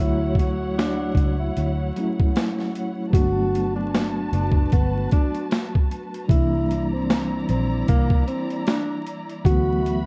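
A dark, subtoned tenor saxophone carries the jazz-style melody with vibrato and scooped notes, softened by a low-pass filter, in this mellow, dreamy lo-fi hip hop excerpt at 76 BPM with a swung sixteenth-note feel. Beneath it, a gritty, overdriven reed electric piano with fast tremolo and cassette-tape character plays through Dmaj9, Gmaj9, C9 and D69. A lush, bowed string section holds filtered sustained chords, and a round, foam-muted electric bass anchors the low end. From 0.4 s a compressed, pitched-down boom bap kit sits up front with a thumpy kick, high-tuned snare and hi-hat, all set in light reverb, vinyl crackle and a warm production.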